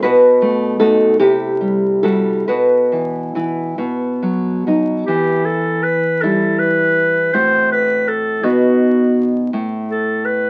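Wrapped in the crackle of a very old 78 rpm record and a wet club reverb, this melancholic, solemn romantic duo for clarinet and classical guitar moves in a rubato 6/8 at 45-56 BPM in E minor, opening with a deep, fingerpicked nylon-string guitar up front, its finger squeaks audible, before a clear, vintage clarinet enters at 5.1 seconds to carry a classical-style solo melody as the harmony passes from B7 through Em and F#dim/A to a B7 with its third omitted over A that leaves this fragment of a longer piece unresolved.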